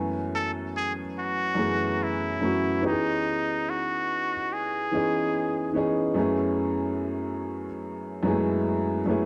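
A slow hip hop groove at 72 BPM in 4/4 carries a lazy 16th-note swing, setting a reflective, nostalgic mood in F# dorian across this short excerpt cut from a longer piece. A dark upright piano plays the accompaniment throughout, its woody, boxy tone touched with cassette tape character, audible action noise and long sustain, sitting up front and intimate. A trumpet with a straight mute enters at 0.4 seconds and carries a jazz-style solo melody until 5.8 seconds, its nasal, breathy sound shaded with vibrato and kept present in the mix. The harmony moves from F#m11 to C#m9 at 2.8 seconds and returns to F#m11 at 6.2 seconds. Moderate spring reverb and small room ambience frame a dark, warm production.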